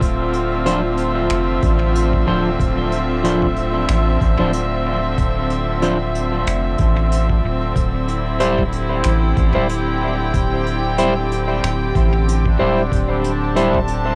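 A hazy home cassette recording with light reverb and small-room ambience frames this spacious ambient dub excerpt in D minor at 93 BPM, where a rich, earthy chamber string section holds bowed chords with light vibrato up front, moving from Dm7 to C/D at 7.8 seconds over a deep, round sub bass. A muffled, thumpy electronic kick sits in the background, while a vintage brush kit with finger snaps and hi-hat adds a faint, pumping room sound treated with dub echo. From 0.7 seconds, a dark, slightly broken-up electric guitar plays fingered stabs trailed by that same echo.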